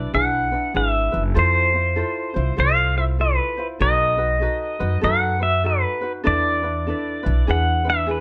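A light reverb and a gently rounded top end give this short excerpt the feel of a small band playing live together in one room. It is a dreamy, sunny Hawaiian piece at 98 BPM in 4/4, with a lazy swing on the eighth notes, and it moves through E7, Fmaj7, B7 and E7sus4 before settling back on E7 at 7.5 seconds. The electric pedal steel guitar carries the melody up front, its clean, compressed, warm tone shaped by fingerpicks, slide and volume swells in a high register. Beneath it, an acoustic ukulele adds light, fingerpicked accompaniment at a softer level. The upright bass sits up front too, played pizzicato on gut strings with a woody, dark, thumpy sound that anchors the low end. All three parts play together for the full 8.2 seconds.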